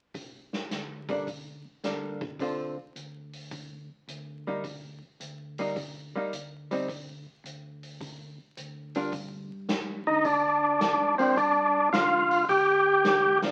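Heard through the crackle of a very old 78 rpm record with a moderate studio reverb, this short cut from a smoky, late-night soul jazz organ trio swings at 107 BPM in G minor. A big-room acoustic drum kit with punchy kick, hi-hat and medium-tuned snare starts things off, joined by a round, dark tonewheel organ bass through a slow rotary speaker and a picked, compressed hollow-body archtop guitar sitting up front with chords that move from Gmadd9 through Dm7 and a rootless Cm7. At 10.1 seconds a thick, lightly overdriven organ lead with percussive third-harmonic attack and key click steps forward over a G7 chord to carry the melody.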